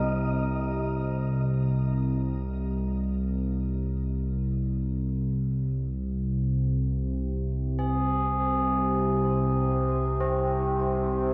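An up-front analog drone of detuned, wave-folded pulse and sawtooth tones, thickened with chorus, sustains low in free time through this ominous, vast dark ambient fragment, while soft tubular bells, glinting only at the start and then arpeggiating over an Ab chord from 7.8 seconds, ring out solemn and metallic through delay and shimmer reverb, all bathed in a cathedral-like reverb and the warbling pitch drift of worn cassette tape.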